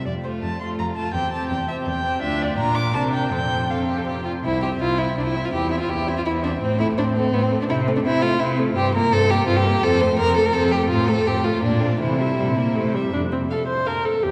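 A quick classical-period movement for string quartet in triple time, this spirited, cheerful passage is cut from a longer piece. The melody belongs to a dark-toned violin set in the background, its smooth top and soft attack shaded by vibrato and portamento. A second violin carries a close, warm line up front, just as expressive with its own sliding and vibrato. The viola supplies accompaniment with a gentle, soft-onset bowed tone, while a rich, even cello anchors the bass from the front. The harmony shifts at 4.4 s and again at 8.8 s, passing through minor and seventh chords, and the quartet sits in a cavernous cathedral reverb with a long tail, recorded in a church or concert hall and touched by vinyl crackle.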